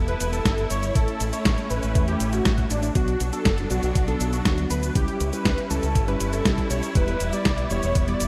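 A straight 4/4 pulse from a thumpy electronic kick and a detuned 8-bit drum machine playing cabasa, hi-hat and snare drum drives this nostalgic, danceable italo disco excerpt, where a fingered electric bass with an envelope filter and tube saturation sits under a dark, lush bowed string section, a thick, detuned sawtooth unison lead with vibrato, subtle chorus and 12-bit sampler grit carries the melody, and a mellow tine electric piano adds stabs from 3.0 seconds, set in a bright 1980s-style digital mix with a moderate, lush hall reverb.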